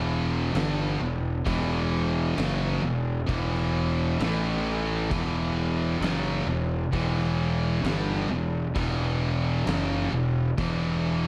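The recording has a moderate large studio reverb around a small room ambience, with a growly, overdriven fuzz bass fingered up front. This sludgy, heavy stoner and doom metal fragment, cut from a longer piece, crawls at 66 BPM in straight 4/4 in E minor. A bright, double-tracked high-gain guitar picks the riff over two thick fuzz guitars sitting further back, one dark and the other warm, while the bass holds down the low end. An oversized low-tuned acoustic drum kit enters at 0.6 seconds in the background, with a fat snare, a punchy kick and dark crash cymbals, its saturated, gritty tone shaped by a rolled-off top. The riff rests on E minor, shifts briefly to A5 at 4.2 seconds, and returns to E minor for the remainder of the passage.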